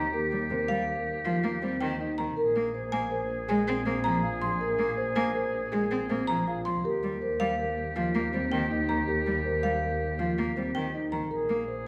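Hypnotic and propulsive, this minimalist classical pattern piece in 6/4 sets a mellow, soft-mallet marimba melody in the background against ringing vibraphone and dry, woody xylophone arpeggios, while a solo oboe with vintage vibrato carries a second line, a rich bowed cello with expressive portamento accompanies, and a dark, lush double bass section anchors the low end over chords alternating between Eb69 and Bb5, inside a moderate scoring-stage reverb.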